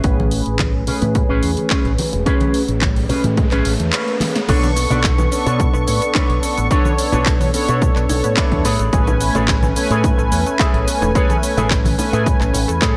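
Up front sits a mellow synth brass, round and brassy with detuned sawtooth edges, chorus and a digital delay, pumping against the beat as it carries the chords of this cosmic, sensual nu-disco cut from a longer piece, moving at 108 BPM in B dorian. Beside it, a bright, twangy electric guitar with an envelope filter picks a clean riff through analog chorus and delay, while a fingered electric bass, also run through an envelope filter, anchors the low end with an amped, direct tone. A punchy, tape-warm electronic kick drives a layered house kit of snare, handclaps, hi-hat, cabasa and crash, with acoustic congas and bongos tucked in the background. The opening builds over a filter sweep and an electronic riser from 2.1 seconds, capped by a band accent and a drum fill before the drop at 4.5 seconds shifts the harmony from Amaj9 to Bm9. There a very quiet analog pluck joins with short, bright arpeggios, and a clean guitar fill surfaces at 7.8 seconds before the chords return to Amaj9, all held in light reverb and a digital ambience.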